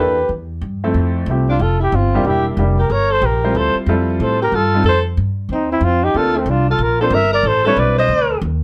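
Lightly reverberant, this playful small-group swing and bop excerpt puts a warm, scooping flugelhorn melody up front, shadowed by a distant, breathy alto saxophone line with mellow vibrato, while a clear concert grand piano with deep lows comps through lush extended chords and a woody, growly pizzicato upright bass swings underneath until the fragment cuts off at 8.6 seconds.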